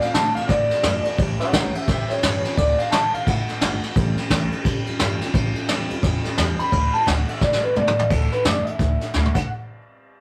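Rockabilly with a retro, upbeat feel, this short excerpt from a longer piece moves at 174 BPM in D major with a swung eighth-note groove, shifting between D and A7 in a rough rehearsal-room sound with moderate reverb. A twangy, slightly broken-up electric guitar through a small old amp carries the melody in two phrases, resting from 3.9 to 6.6 seconds, while a bright, full-bodied steel-string acoustic guitar is picked in the background and a woody, thumpy upright bass with gut strings sits low beneath it. Up front, a vintage brush kit with a punchy kick, medium-tuned snare and rolled-off top keeps time, adding fills at 7.4 and 9.1 seconds.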